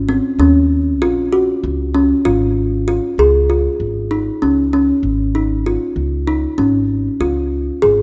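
Shimmering and playful, this excerpt of contemporary chamber music moves in an uneven 9/8 at 194 BPM counted in eighths, with a straight feel in Db major and tuning set to A4 = 442 Hz. A kalimba carries the arpeggios from 0.1 seconds, its bright, woody, thumbnail-plucked notes short and mid-forward, sitting up front between C4 and Ab4. Underneath, a pizzicato upright bass on steel strings holds the low end from the very start, growly and thumpy between Ab1 and Eb2, close in the mix but a little quieter than the kalimba. The harmony opens on Ebm7 and settles onto Db, with the second section arriving at 3.2 seconds and running until both parts stop at 8.0 seconds. Light reverb and a dark, warm production frame the pair.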